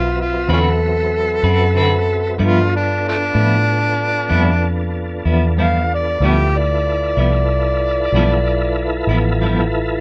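Laid-back and rollicking, this slow blues fragment in 12/8 at 63 BPM, tuned slightly flat to A4 = 437 Hz, moves from D13 to G13 beneath a gritty, overdriven harmonica solo full of vibrato, tongue slaps and scooped notes in a jazz style. A tonewheel organ holds smooth, clean sustained chords through chorus vibrato and a fast rotary speaker, while a dark, round, punchy foam-muted electric bass sits up front. A clean, picked electric guitar with tremolo enters at 0.5 seconds and plays until 9.6 seconds, and the harmonica drops out at 9.1 seconds, all within a rough home demo mix with light reverb.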